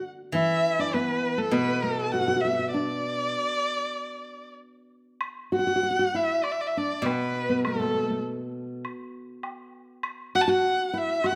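A rich, bowed erhu carries the melody up front, its soft attack, vibrato and sliding portamento giving this pastoral, graceful Chinese chamber piece an expressive voice in D gong mode, loosely rubato around 100 BPM in 4/4. Beneath it a woody, fingerpicked nylon-string guitar with old strings plays a second line throughout, while a silvery, ringing steel-string zither adds low accompaniment in two short passages, from 0.3 to 3.3 seconds and again from 7.0 seconds. A quiet woodblock with dark cymbals enters at 5.2 seconds, and a moderate recital-hall reverb surrounds this brief excerpt cut from a longer piece.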